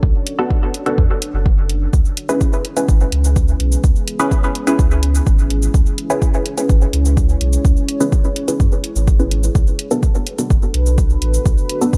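A steady, straight 4/4 pulse at 126 BPM drives this hypnotic, cavernous dub techno excerpt in C# phrygian, built on an up-front, overdriven electronic kick re-recorded in a small room, with a layered hi-hat and cabasa joining at 0.3 seconds. A round sine sub bass and a muted, detuned chord stab, filtered with phaser, dub echo and sidechain pumping from 0.4 seconds, move over Bm7 and C#m7. Beneath them, a moody, warbling sawtooth pad sustains chords through chorus and built-in reverb, all in a dark, warm digital ambience.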